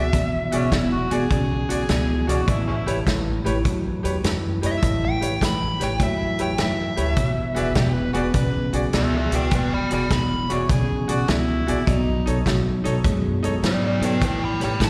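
This sounds like a live gig heard through the venue's PA, with light reverb and the bloom of a recital hall around a studio-like closeness. It's a gritty, soulful electric blues shuffle at 102 BPM in 4/4, swung on the eighths and sitting in E mixolydian over E9, A9 and B9 chords, cut from a longer piece. An upright bass with gut strings gives a woody, thumpy pizzicato foundation, and a warm, mid-forward soul drum kit sits up front with a medium-tuned snare, a tight kick and a rolled-off top. Over them, an electric guitar at the edge of break-up plays a compressed, fingered riff with subtle chorus and slapback echo, while a bright, slightly detuned upright piano comps with audible action noise. The overdriven harmonica comes in at 0.5 seconds and again at 7.6 seconds, amplified and raspy, with light vibrato, tongue slaps and scooped notes in a jazz-inflected solo voice. The smooth, dark, overdriven lead guitar carries the melody up front with slapback echo, playing only a brief phrase at the start and then returning for good from 4.7 seconds.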